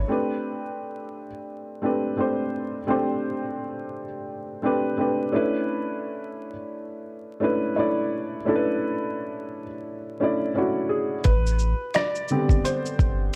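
A felt-muted upright piano opens this nostalgic, hazy lo-fi hip hop fragment, its mellow, intimate tone softened further by cassette tape character and a low-pass filter, with a brief touch of deep, round sub bass at the very start. The piano carries the harmony on its own through the first section, moving from Am11 to Bm11 with a swung, unhurried feel. Light reverb and a bed of vinyl crackle give the whole piece a dusty, lived-in atmosphere. At 11.2 seconds the piano takes a solo, and a gritty, compressed sampler-style drum kit enters up front with a thumpy kick, hi-hat, rim click and shaker. The soft dub sub bass returns at 11.3 seconds with sustained triangle and square-wave tones beneath the piano as the chords settle back on Am11 before the cut at 13.4 seconds.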